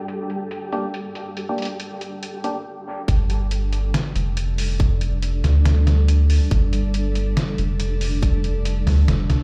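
A half-time 4/4 groove at 140 BPM with swung 16ths drives this dark, meditative slice of deep dubstep in G minor. A blurred, full-bodied granular cloud pad holds sustained chords throughout, while a flickering, grainy texture sits in the background and a hollow, organ-like stab, lush with chorus and dub echo, sounds from 0.7 seconds. Muffled, pitched-down sampler-style hi-hat and snare run under a filter sweep until a brief stop; at 3.1 seconds the drop lands with a tight, tape-warm electronic kick and a deep, round sub bass up front, all heard through a low-pass filter as if played on a big sound system in a bare room.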